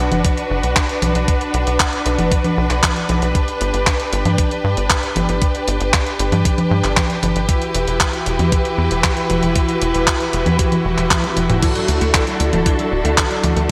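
Playful and sunny, this italo disco excerpt moves at 116 BPM in G major, with a lush studio string section holding vibrato-rich sustained chords over a tight, punchy sequencer bass whose sawtooth filter pluck gets tube-saturated grit. A thumpy sampler-style electronic kick and an up-front 12-bit drum machine supply congas, handclaps, hi-hat, crash and toms, with a drum fill at 11.1 seconds. At 11.6 seconds a twangy, direct-recorded clean electric guitar slips in behind with chorused, delayed arpeggios as the chords move from Bm through G and Emadd9 to Dadd9, all bathed in bright 1980s-style digital hall reverb.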